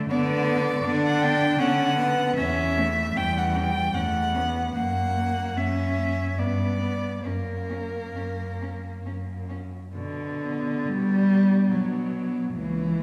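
A high cello carries the melody with a pure, floating tone, bowed sul tasto and set back in the background so it seems to hover above the ensemble. This solemn, yearning classical piece for four cellos moves in a lyrical three-time with a rubato feel, and it is cut from a longer work. Beneath the melody, an accompanying cello sits up front with an airy bow and light vibrato, while a second inner line sounds intimate and close, and a bass cello grounds the texture with the same soft attack and breathy sul tasto bowing. The harmony moves from B minor over D through a diminished chord and F sharp to G and back, reaching a new section at 9.9 seconds that returns to B minor. A wet scoring-stage reverb places the listener further back in the room, giving the gentle, warm blend a spacious halo.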